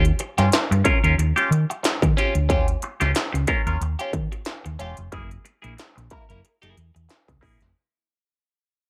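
A lightly swung sixteenth-note groove in 4/4 drives this playful, energetic funk excerpt, which fades out across its 7.8 seconds as the harmony moves from Eb9 to Gb9 at 5.1 s. An up-front industrial drum kit has an electronic, produced sound, with a distorted kick, clanging snare and crisp hats, tape-tinged and re-recorded in a small room. Beneath it, a round, dark hollow-body short-scale fingered bass plays, while a bright, clean, picked semi-hollow guitar, compressed and treated with phaser and plate reverb, supplies accompaniment on top, all within a light reverb.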